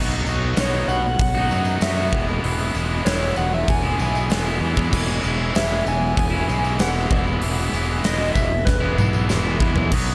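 A straight 4/4 groove at 96 BPM drives this swaggering classic rock passage, cut from a longer piece and moving through B, E, C#m/E and back to E. A tight, double-tracked distorted guitar riff sits up front from the first beat, bright and picked with a slapback echo, over a dark, round fuzz bass that is overdriven and punchy. At 0.6 s a huge arena drum kit arrives with a punchy kick, medium-tuned snare, toms, hi-hat and bright crash cymbals in a pumping room sound. At the same moment, an electric slide guitar enters with a slightly broken-up melody, played with fingerpicks and carried by slapback echo and digital delay. A very quiet, jingly tambourine sits close in the mix, and a drum fill at 8.7 s ushers the section out. A lush hall reverb gives the whole mix a big arena scale.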